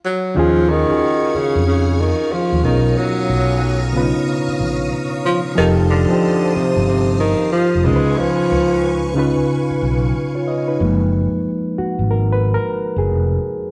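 R&B with a soulful, relaxed swing, cut from a longer piece, where a breathy, up-front tenor saxophone enters during a brief opening stop and carries the melody with vibrato and scooped notes over reedy, lightly overdriven electric piano, shimmering vintage string-machine violins and a growly fretless bass, the band playing together in a large studio bathed in lush reverb, until the saxophone drops out at 9.2 s and the electric piano takes a solo from 10.8 s.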